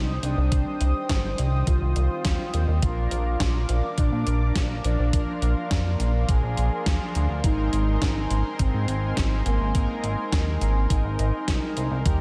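A driving 104 BPM synthwave groove in straight 4/4 sets the pulse, with a sampler-style drum machine entering at 0.2 s, its hi-hat and gated-reverb snare sounding re-recorded in a large room, and an overdriven, thumpy electronic kick joining at 0.5 s, while a glossy, nasal chorused synth bass pumps up front beneath a shimmering, evolving pulse-width pad that breathes with the same sidechain pumping. Over chords moving from Cm to Bb to Abadd9, a smooth, expressive sawtooth-and-triangle lead glides through its melody with portamento, vibrato and diffuse ambient delay, as round, warbling synth brass stabs sit in the background with chorus and analog delay. The cinematic, dreamy mix is soaked in a moderate cathedral reverb, and this 12.2-second excerpt is cut from a longer piece.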